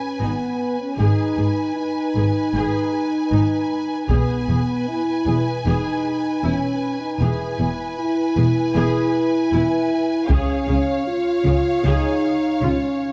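Mellow, punchy French horns hold sustained chords up front in this dark, epic orchestral film-score excerpt, while bowed violins carry a lush melody above a smooth second violin line, expressive violas with portamento fill the accompaniment, focused cellos and woody double basses anchor the bass, and a taiko ensemble struck with heavy sticks booms in at 4.1 and 10.3 seconds, the whole set in a moderate scoring-stage reverb.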